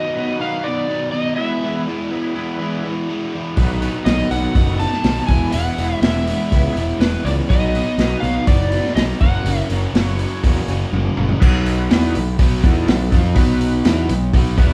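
Swaggering and driving, this blues rock and southern rock excerpt opens with a warm overdriven slide guitar singing the melody until 9.7 seconds over a crunchy, double-tracked guitar riff and thick tonewheel organ chords held in the background through a slow rotary speaker with chorus vibrato, before a punchy fuzz bass and a muffled, lo-fi vintage drum kit with dark cymbals arrive up front at 3.6 seconds, the drums throwing in a fill at 10.9 seconds, all played live as a band in one room with moderate large studio reverb.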